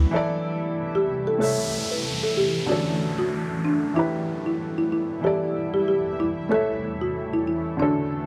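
Dancehall at 94 BPM in 4/4 with a light swing on the sixteenths, this short cut from a longer piece carries a tough, sultry mood. A smooth, vintage grand piano sits up front playing accompaniment throughout, while a cloudy, granular pad holds sustained chords beneath it, its blurred, evolving tone softened by a slow attack, long release and its own reverb. At 1.0 seconds a woody, rustic marimba struck with medium mallets enters with the melody, its dry hardwood character touched with delay and an airy edge. From 1.4 seconds an electronic downlifter and swell adds sound effects as the music moves into a new section. The harmony travels through C6, A, D, Em and C6/E before returning to A, all set in a light studio reverb.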